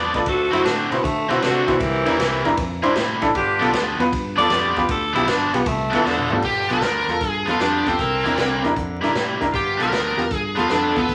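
Vinyl crackle and a wet, large studio reverb give this gritty, swaggering electric blues shuffle a worn, spacious sound, caught partway through a longer piece. A growling tenor saxophone, raspy and present with vibrato, takes a jazz-style solo until 6.4 seconds, over a crunchy overdriven guitar riff and a warm fingered electric bass. A bright, woody upright piano fills in the accompaniment, while a distant, roomy saxophone section punches tight, clear stabs with light vibrato in the background. The swinging big-band drum kit has a natural studio-room sound with a punchy kick, medium-tuned snare, hi-hat, ride, crash and toms, and plays a fill at 6.0 seconds. From 6.4 seconds a smooth overdriven lead guitar steps up front with the melody as the chords move among D7, C7 and G7.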